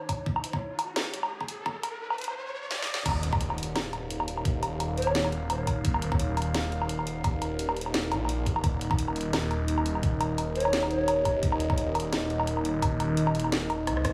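A dark analog pad holding an Ebsus2 chord opens this spacious, heavy half-time drum and bass fragment at 172 BPM, its filter sweeping under a rising electronic riser as a brief drum fill builds toward the drop. At 3.1 seconds an impact hits and the phased, detuned saw bass arrives thick and saturated, while a layered knocking electronic kick and an up-front kit with a cracking snare, hi-hat, rim click, woodblock and crash ride a lightly swung 16th feel, all under the pad's chorus-tinged, sidechain-pumped breathing. A mellow, hollow jazz flute with an airy chiff and tape echo slips in only in fleeting phrases, first at 5.0 seconds and again at 10.6 seconds, drifting through a moderate echo-chamber reverb.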